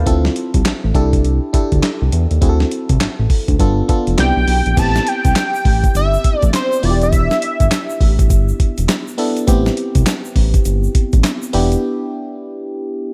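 Glassy, chorused FM electric piano and a fat, detuned sawtooth bass open this punchy, confident, swung new jack swing excerpt, soon joined by a gritty, compressed sampler-style drum kit with a thumpy kick, handclaps and gated reverb, while a thick, bold unison lead with vibrato and digital delay carries the melody from 4.2 to 8.2 seconds, a grainy tube shaker sits in the background from 4.8 seconds, and the piano plays alone in a short break from 11.8 seconds.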